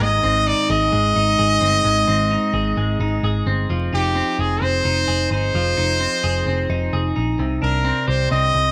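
Breezy and youthful, this jangly indie pop excerpt at 130 BPM in straight 4/4 sets a brilliant, punchy trumpet melody with light vibrato against bright, twangy, compressed twelve-string electric guitar arpeggios and a dark, round, foam-muted picked electric bass, all moving from Ab through Fm7 to Cmadd9 in a small room with light reverb and a bed of vinyl crackle.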